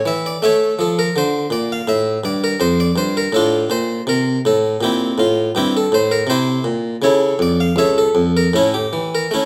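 A solo harpsichord, strung with a single set of strings in the Italian manner, carries this solemn, introspective fragment of a baroque-style suite movement, cut from a longer piece. Its plucked tone is round and warm, sitting up front, and it spans from deep bass notes up into the upper treble. The pulse moves freely in a rubato feel, giving the phrases a searching, unhurried character. The harmony moves from an A chord to D minor, then C, and returns to A at 7.0 seconds. Close, detailed microphones catch the instrument's articulation, while a moderate recital-hall reverb adds a sense of space around it.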